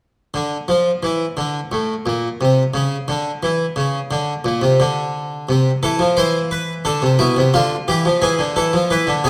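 A close-miked, brilliant Italian-style harpsichord with three sets of strings plays a serious, contemplative baroque-style three-part fugue alone, up front in a moderate recital hall reverb, entering at 0.3 seconds before harmonies settle through A minor, a half-diminished chord and E major in this short passage cut from a longer piece.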